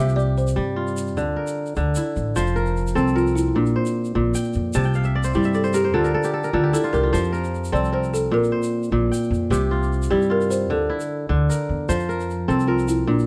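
A straight 12/8 pulse at 101 BPM carries this joyful, flowing excerpt of West African string and xylophone music in F major. A woody, round balafon played with soft rubber mallets carries the melody and takes a solo in the opening 2.4 seconds, while a bright, ringing kora fingerpicks crisp arpeggios up front and adds a fill at 4.7 seconds. A thumpy gut-string upright bass plucks underneath, and a faint, grainy tube shaker sits close and dry, all captured with close, detailed microphones and little reverb.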